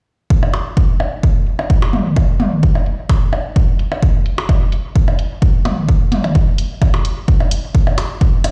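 Cool and clinical, this techno fragment, cut from a longer piece, rides a lightly swung 4/4 groove built on a punchy, tape-warm electronic kick drum that sits up front from 0.3 seconds. Overdriven electronic percussion blips and toms carry dub echo and small-room ambience, while a softer, layered electronic hi-hat runs through a low-pass filter, and a filter sweep moves across the drums throughout. The whole track sounds as though it is played through a big sound system in a bare stone room, lending it a lightly reverberant edge.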